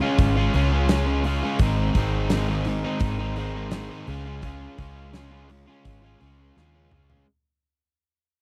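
A straight, steady 4/4 groove drives this swaggering classic rock fragment, cut from a longer piece, with a big rock drum kit sitting up front, its fat snare and punchy kick ringing in a big room alongside hi-hat and toms before a drum fill at 6.6 seconds. Two bright, picked electric guitars carry the riff over a Db to Ab chord movement: a crunchy overdriven guitar placed up front and an overdriven semi-hollow guitar with a hollow-body tone. Underneath, a vintage foam-muted fingered electric bass adds a dark, round low end, all captured in a close, 1970s-style studio sound as the passage fades out across its full 7.3 seconds.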